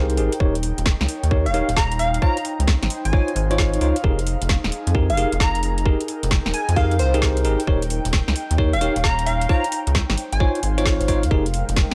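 UK garage in a skippy two-step swing with a moody cast, cut from a longer piece: a crystalline, detuned wavetable pluck carries the melody over bell-like electric piano stabs that run through a low-pass filter sweep and tape echo, while an up-front rubbery square bass bounces beneath a soft, breathy pad that pumps with sidechain. A garage kit of woody snare and metallic hats arrives at 0.1 seconds, and a tight electronic kick joins at 0.4 seconds, all cycling through Eb7, Dbmaj9 and Fm11. The recording is dry and gritty, and a distant ethereal pad with ensemble chorus and its own reverb slips in at 11.5 seconds.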